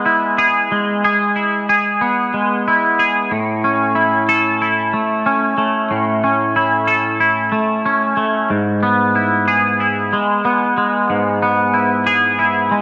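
A straight 4/4 rock pulse at 92 BPM in A major, tuned to A4 = 436 Hz, carries this euphoric, soaring fragment of a longer piece. A lone twangy electric guitar plays fingered, clean and up front from start to finish, coloured by analog chorus and slapback echo as it moves from E/G# to A at 3.3 seconds and back to E/G# at 8.5 seconds. A huge ambient reverb with a long 4.4-second tail surrounds the guitar, and the top end is rounded off above 10.3 kHz.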